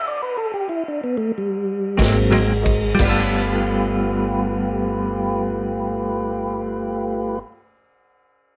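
Laid-back and swaggering, this short slow blues in 12/8 sits around 58-65 BPM in G mixolydian, and it is cut from a longer piece. A lightly overdriven tonewheel organ opens alone with sustained chords through a slow rotary speaker, its key click and vibrato up front, while the tempo slows over the first 3.0 seconds. At 2.0 seconds the band enters: a clean, scooped electric guitar with tremolo, a slightly detuned upright piano with short sustain in the background, and a woody pizzicato upright bass on steel strings. A vintage drum kit with dark cymbals, a medium-tuned snare and a punchy kick plays only until 3.2 seconds. The harmony moves from Gadd9 to Ab9 and settles on G9, all in a moderate club reverb, with nothing above 10.3 kHz.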